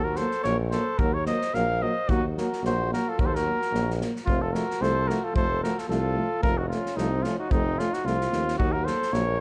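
A swung 2/4 pulse at 111 BPM drives this bittersweet, restless Balkan brass band fragment, where an up-front flugelhorn carries the melody over a vibrato-laden alto saxophone second line, a smooth-topped tuba bass, a mellow, distant French horn and a very quiet, close-miked trombone in accompaniment, and an acoustic drum kit of punchy kick and snare played with bundle sticks, all in light reverb as the chords move from Ebm to F and back to Ebm at 8.6 seconds.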